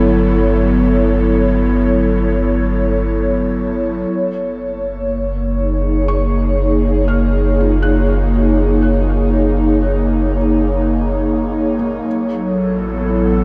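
An airy, breathy pad sits up front in this luminous ambient excerpt, holding slow-attack chords with a long release, its detuned, chorused tone thickened by a noise layer and a moving notch and lifted by shimmer reverb. Beneath it, a round sine sub bass holds deep, sustained notes at 60 BPM in a straight 4/4, also prominent in the mix. The harmony moves from Gmaj9 to Gbmaj7 and settles on A near the close, tuned slightly sharp to A4 = 441 Hz. At 6.1 seconds a felt-muted upright piano enters in the background with soft, dark arpeggios that fade in, its intimate tone trailed by dub echo and shimmer reverb until it stops at 12.3 seconds. A plate reverb with a 3.7-second decay and an echo-heavy mix give the whole piece a gentle, floating spaciousness.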